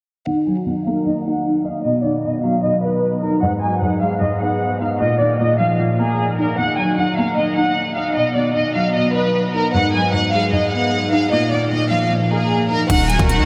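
A half-time trap pulse at 152 BPM in 4/4 frames this brooding, hard-hitting hip hop cue in Eb minor, cut from a longer piece. For most of its length a floating, bowed violin section carries the melody up front, paired with a soft, boxy felt-muted upright piano whose mellow accompaniment is thickened by ensemble chorus, both shaded by low-pass filtering while a filter sweep runs from 0.3 to 12.9 seconds and tape echo trails the violins. The harmony cycles twice through Ebm, B, Abm7 and Bbsus4 before landing back on Ebm at 12.9 seconds. At that moment the beat drops in: a trap kit with a hard-clipped kick, metallic hats and a crash cymbal, a saturated, aggressive 808-style bass with a noise layer and fast, decaying attack, and a distant symphonic string section holding smooth chords with light vibrato. The whole mix is soaked in a huge ambient reverb with an 8.1-second tail, giving it a dreamy, cavernous haze.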